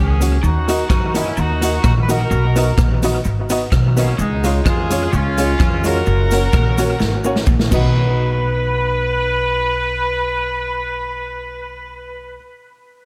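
Ska at 128 BPM in B major, upbeat and bouncy with a light swing, cut from a longer piece. A horn section carries the melody up front with light vibrato and a roomy, distant quality, its phrases trailing dub echo. A pizzicato upright bass with a woody tone sits equally prominent beside a big-room drum kit with a punchy kick, medium-tuned snare, rim clicks, hi-hat and crash, the kit also touched by dub echo. In the background, a clean, scooped electric guitar picks a riff until 7.6 s, while a dark, fingered hollow-body jazz guitar and a mellow upright piano with audible action noise and short, vintage stabs add echoed accompaniment over chords moving from D#m through B, C# and F#. A grainy, bright cabasa sits low in the mix, and a drum fill from 7.0 s leads into a second section at 7.9 s, where the drums and cabasa soon drop away and the horns, bass, jazz guitar and piano carry on under light reverb.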